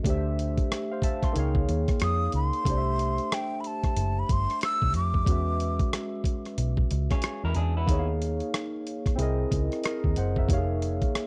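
This sultry, late-night neo-soul and R&B clip opens on a barky, bright tine electric piano, lightly overdriven through a combo amp with analog chorus, over a boom bap sampler-style drum kit of pitched-down, gritty hi-hat, rim click and a thumpy kick. A dark, round, foam-muted electric bass joins almost at once, up front with tube saturation, and the groove sits at 92 BPM in 4/4 with a 62% swing on the sixteenths. At 2.0 seconds a breathy, hollow metal jazz flute takes the melody between G5 and E6, its soft attack, vibrato and lifted highs placed close and forward. The harmony drifts through rich colors such as Dbadd9, Cadd9, E13 and C7alt, closing on Db69/F. At 7.1 seconds a picked electric guitar through a small old amp adds a brief, slightly broken-up, lo-fi second line. The dry, close 1970s-style studio sound carries a touch of digital ambience, and the compressed, tape-tinged drums keep the whole passage gritty and intimate.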